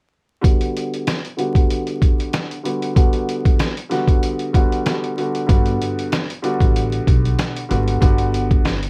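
Warm and nostalgic, this boom-bap hip-hop excerpt sets a clear, woody upright piano on a Gmaj7 chord, filtered and swept throughout, over a gritty, compressed, pitched-down sampler drum kit with a thumpy kick and medium-tuned snare, while a pizzicato upright bass enters at 5.5 seconds, all dry and coloured by worn cassette tape warble, vinyl crackle and drifting pitch.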